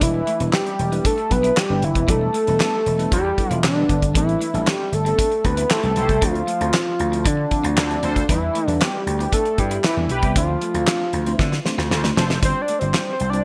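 A bright, polished 1980s-style digital production with light reverb and small-room ambience frames this slick, funky slice of early-eighties boogie funk, moving at 116 BPM in a straight 4/4 in D dorian. Up front, a fat, detuned sawtooth-and-square analog lead with a sub octave carries the melody between D4 and D5, its sustained notes colored by vibrato, chorus and digital delay, while a damped 70s drum kit with a tight kick, fat snare, hi-hat and handclaps sits dry and forward under gated reverb. A punchy, amped slap bass drives the low end, and a very quiet clean, picked electric guitar plays a riff beneath a soft, round FM electric piano that adds chorused, phased chords from the background. At 5.7 seconds a dark, evolving synth brass enters as a second line, sustained and brassy with vibrato, chorus and phaser, until 12.4 seconds. The chords move from Em7 through Am11, Dm9 and Dm7, and after a drum fill the lead breaks into a short solo over G7sus4 as the cut ends at 13.4 seconds.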